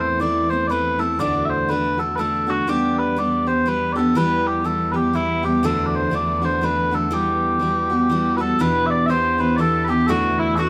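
A swung Celtic waltz in 3/4 at 122 BPM, this E minor folk passage from a longer piece feels dark yet spirited and lively. Sweet, vibrato-tinged small bagpipes carry the melody up front over bright, full-bodied picked steel-string acoustic guitar, while an earthy bowed cello holds a low drone on E beneath them. At 8.4 seconds a second small-bagpipe line joins quietly in the background, all set in a moderate studio reverb.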